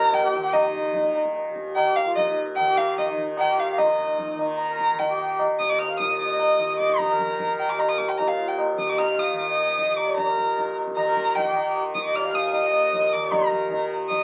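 A rich, expressive violin leads this meditative, devotional Hindustani classical passage, with a single bowed player sitting up front and colouring the melody with vibrato and portamento. Beneath it, a reedy pedal harmonium carries a breathing second line, sitting mid-forward in the blend. A bright tanpura drone shimmers and buzzes underneath, softly plucked, while high-tuned tabla enters at 0.1 s with a ringing, acoustic tone from a small room. The music gathers pace throughout, moving from a brief opening into a longer second section at 3.8 s. Moderate studio reverb surrounds the ensemble, and the sound carries the crackle of a very old 78 rpm record, heard here as a cut from a longer piece.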